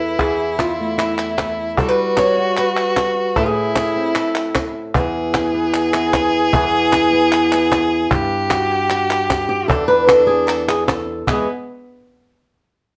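A worn, warbling cassette-tape sound with pitch drift and moderate studio reverb colors this passionate, dramatic flamenco fragment at 152 BPM, where an up-front fingerpicked acoustic guitar with fresh strings and audible finger squeak carries the melody over chords moving from Esus4 through Gmaj7 and Am to E5, a smooth, clear bowed violin with vibrato adds a close second line, and a snappy cajon with snares and crisp, dry palmas hand claps keep time from 0.2 s to 11.4 s.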